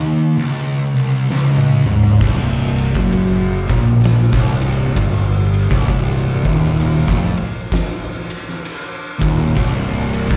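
Stoner and doom metal at a slow 65 BPM in C minor, sludgy and hypnotic, with a swung 4/4 feel, cut from a longer piece and heard as a live gig through the venue's PA with recital hall reverb. A compressed, up-front fuzz guitar carries the riff throughout, joined by a darker, thick fuzz guitar in the background until 2.2 seconds and again from 9.5 seconds, while an oversized low-tuned acoustic kit with a fat snare and punchy kick plays a fill from 1.3 seconds in a pumping big room. At 2.2 seconds a growly, overdriven fingered bass enters up front, bright and punchy, anchoring the riff on a C minor chord.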